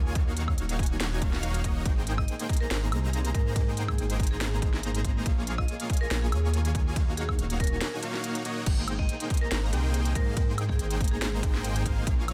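A hard-clipped, up-front electronic kick drives this playful, bright future bass drop at 141 BPM in a half-time feel, alongside a trap kit with a sharp snare, crisp hats, woodblock and cymbals, a thick, saturated detuned saw bass with chorus, a huge compressed supersaw riff pumping to the sidechain, and, from 2.2 seconds, an airy, ringing vibraphone melody with tape echo sitting in the background, all in a dry, dense, heavily limited mix.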